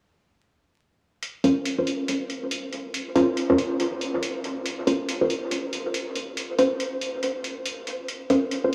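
Brooding and cavernous, this excerpt of deep dubstep moves at 140 BPM in a half-time, swung feel in Bb minor, as a muted, detuned sawtooth dub chord stab, up front with chorus, cassette-tape colour and dub echo, rings out a Bbmadd9 under a filter sweep from 1.4 seconds, while a gritty, pitched-down, sampler-style electronic hi-hat sits lower in the mix from 1.2 seconds, all drenched in an enormous dreamy reverb with vinyl crackle.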